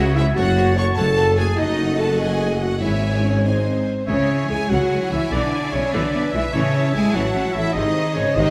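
A lush violin section carries the expressive, vibrato-rich melody with gliding portamento through this adventurous, determined cinematic fragment in C# harmonic minor at 98 BPM in a straight 6/8, where an airy flute ensemble, a mellow distant clarinet, a second focused violin section and a soft-edged oboe weave supporting lines, a smooth viola section fills in the accompaniment, a dark French horn section sustains roomy chords, and a solo tuba joins cello and double bass sections to anchor the bass, all bathed in a recital hall's reverb over roughly 8.5 seconds.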